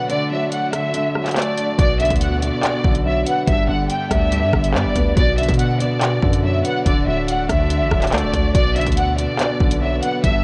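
A worn, warbling cassette sound with pitch drift and light reverb hangs over this cold, ominous half-time drill excerpt. Up front, a lush symphonic violin section carries the vibrato-laden melody through tape echo and a low-pass filter, above a deep, natural grand piano accompaniment that is also filtered, while a smooth, bowed string section sustains chords with portamento in the background. The electronic drum kit brings bright hats, claps and rim clicks from the start, and at 1.8 seconds its knocking kick arrives together with a punchy, heavy 808 bass with a fast attack and decaying tail.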